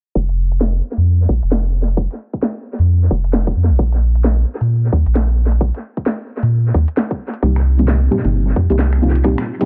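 A deep, round sub bass and a tight electronic kick open this skippy, late-night two-step garage excerpt at 132 BPM, the swung groove filled out by a garage kit of finger snaps, cracking snare and hi-hats washed in dub echo, all cut from a longer piece. A filter sweep runs across the sub bass throughout, and the echo-heavy, low-pass-filtered mix stays dry of reverb, with the kick and kit carrying a small-room tightness. At 7.4 seconds a dark, soft chord stab with a sub octave enters on Cm7, shimmering with chorus, phaser and tape echo.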